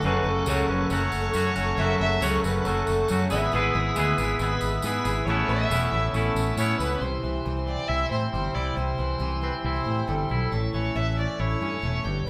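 Folk rock with a heartland rock streak, this excerpt moves at 138 BPM in a straight 4/4 and carries a hopeful, open-road mood. A punchy fingered electric bass sits up front beside a twangy, scooped electric guitar riff soaked in spring reverb, while a shimmering, octave-doubled twelve-string acoustic guitar is picked underneath as accompaniment. A piping tonewheel organ holds sustained chords with audible key click through a slow rotary speaker, and a jingly tambourine sits close until about 6.9 seconds. A dark, woody fiddle with light vibrato takes the melody from 0.7 seconds, sounding distant, while an overdriven slide guitar drifts in the background as a second line in brief spots. The harmony moves from F#m through E/G# and Aadd9, then shifts to C and A in the second section from 7.0 seconds. The band sounds like it is playing live together in one large studio room with a moderate reverb.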